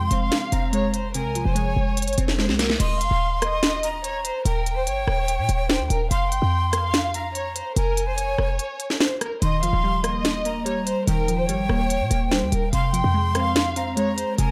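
A bowed violin section with vibrato and portamento carries the melody alongside a breathy, chiffy jazz flute line, a glassy, detuned wavetable pluck and a punchy sine 808-style bass, with a crisp electronic drill kit joining almost at once in this dark, tense half-time drill hip hop fragment at 145 BPM, where the pluck drops away at 2.8 seconds after a drum fill and returns at 9.4 seconds, just after a brief spot where the kick falls silent, all in a dry, dusky mix over Fm and Eb chords.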